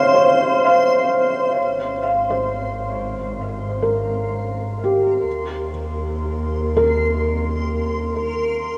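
Ambient and melancholic, this spacious fragment of a longer piece opens with a soft, thick-felt upright piano playing intimate arpeggios through a diffuse ambient delay, over a reversed, dreamy, granular texture with its own built-in reverb. At 1.6 s the harmony moves from a rootless Bbmadd9 to Abadd9 as the texture fades in further and a clear, close bowed double bass section fades in low beneath it with vibrato, before the harmony settles on Eb at 5.3 s. A huge reverb and worn cassette tape with warbly pitch drift give the whole a hazy, faded character.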